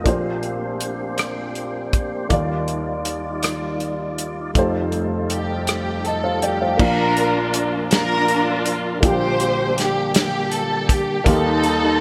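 A bright digital production in the 1980s style, set in a moderate plate reverb, frames this hopeful, soulful slow gospel passage in 6/8 at 54 BPM in Bb major, cut from a longer piece. A dark, woody upright piano with audible action noise and a slightly detuned, intimate character sits up front in accompaniment. Beside it, a clean, percussive tonewheel organ holds sustained chords through a fast rotary speaker and chorus vibrato. A very quiet French horn section adds classical-style sustained chords until 6.8 seconds. A roomy soul drum kit with dark cymbals, a medium-tuned snare and a tight kick keeps time on crash, hi-hat, rim click, snare and kick. At 5.3 seconds a lush, expressive string section takes the melody with vibrato and portamento, treated with digital delay, as the harmony moves from Bb69 and Ebmaj9 through F9 toward Bb, Gm/Bb and Eb.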